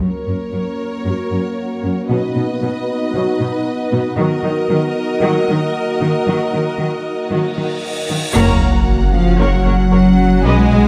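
A rich, up-front cello section carries the bass of this brooding, relentless hybrid orchestral and electronic film cue, joined by a clear violin line, a dark filtered viola section and horns, and a glassy FM pad with ensemble chorus, before a huge, bright cymbal swell at 7.7 seconds lands on an impact at 8.4 seconds where double basses, a saturated sub bass and a soft, warm violin melody arrive in a moderate recital-hall reverb.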